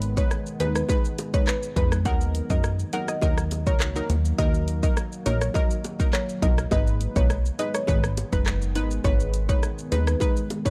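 Dark, warm production with little reverb frames this tough, bouncy dancehall clip, cut from a longer piece and moving at 103 BPM in a straight 4/4 over Abm, Ebm and back to Abm. A pop drum kit sits up front with electronic, layered handclaps, hi-hat, rim click, shaker and a punchy kick, while a plucky analog bass, funky and mellow with a fast filter pluck, shares that forward position. Punchy chord stabs, detuned sawtooth and square tones with a sub octave, pump with sidechain against the kick and are thickened by chorus. Beneath them, a deep, moody ambient pad with a warbling, vintage character holds sustained chords in the background, its slow attack and long release softened by chorus and built-in reverb. From 0.2 seconds a woody, round, mallet-like FM pluck carries the melody high in the range, coloured by chorus and tape echo, and from 0.6 seconds tight, high-tuned acoustic bongos add a very quiet layer of percussion.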